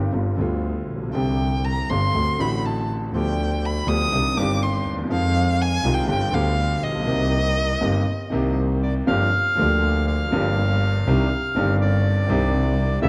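A moderate concert hall reverb surrounds this passionate, sultry tango excerpt, played with a rubato feel in four. A vintage-toned grand piano and a focused, bowed double bass carry the accompaniment throughout, while an up-front violin enters at 1.1 seconds for an expressive solo full of vibrato and portamento. At 8.8 seconds a reedy, airy bandoneon takes up the melody as the music moves into a new section at 9.1 seconds.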